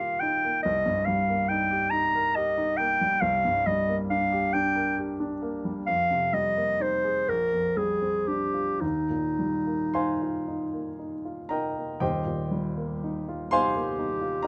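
A smooth-topped clarinet sings the melody up front in a classical style, moving between Eb4 and Bb5 over a polished, present baby grand piano that supplies the harmony from deep in the bass to C6. This dreamy, pastoral impressionist duo in Eb major drifts along in a slow, rubato 6/8 at about 35-47 BPM counted in dotted quarters, its chords moving from Ebadd9 through Cm7, Fm11 and Bb69 before returning to Ebadd9 at 8.8 seconds. Close, detailed microphones and light reverb give the pair a warm intimacy, and the passage, cut from a longer piece, begins a restatement of its opening material at 12.0 seconds.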